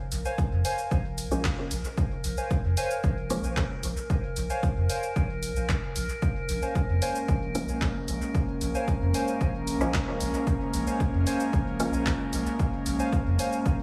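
An overdriven, up-front electronic kick drives this hazy, hypnotic dub techno piece at 113 BPM in Bb minor over a held Bbm7, alongside a dry analog drum machine of cabasa, handclaps and hi-hat with dub echo, a round, soft sub bass pumping under sidechain, a warbling, nostalgic lo-fi synth keys riff, muted, detuned chord stabs through phaser and echo from 1.3 s, an airy, breathy pad entering at 6.6 s, and a faint, glassy texture of drifting overtones, all set in a dreamy mix soaked in plate reverb.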